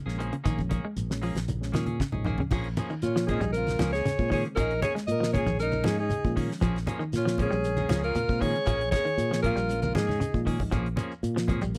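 Driving and funky, this afrobeat excerpt rides a damped 70s drum kit with a fat snare and tight kick, a round, punchy fingered bass, grainy shekere and thin-skinned, low-tuned congas in the background, picked hollow-body guitar arpeggios, clean guitar stabs and a very quiet, reedy electric piano with fast tremolo, while from 3.0 to 10.4 seconds a bright alto saxophone leads up front with light vibrato over a vintage-toned second alto line, all in a dry, close 1970s-style studio sound.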